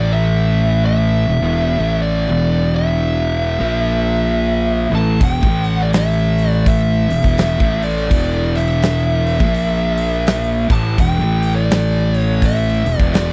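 A dry, close 1970s-style studio sound frames this hypnotic, ominous stoner and doom metal excerpt at 83 BPM in 4/4 with a 60% swing on the eighths, where a growly, overdriven fingered fuzz bass sits up front under two dark, picked fuzz rhythm guitars churning a riff in the background, a distorted fuzz lead guitar carries a melody between D5 and A5 through tape echo over chords cycling among A5, E5 and A#5, and a big acoustic rock drum kit with a punchy kick, medium-tuned snare, hi-hat and rolled-off top enters at 5.2 seconds.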